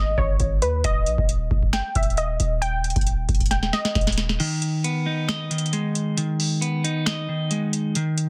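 A warbly, dusty pluck carries the melody at the start of this dark, eerie trap fragment: a detuned sawtooth tone with a filter sweep, chorus and a lo-fi, mellow haze, each note striking fast and then decaying. Beneath it, a hard-hitting 808-style bass built from a sine with a noise layer hits punchy and heavy over a G# minor to D# progression in G# harmonic minor, at 135 BPM in a half-time 4/4 feel. The booming analog drum machine sits up front with a deep kick, tonal snare, metallic hi-hats, finger snaps and crash cymbal, and it plays a fill from 3.5 seconds. At 4.4 seconds the pluck and bass drop out and a clean, picked electric guitar takes over the accompaniment with a warm, compressed tone, while the drums continue with the kick muted. Digital ambience surrounds the parts, and the dense, heavily limited modern master gives the hip hop production a present sound.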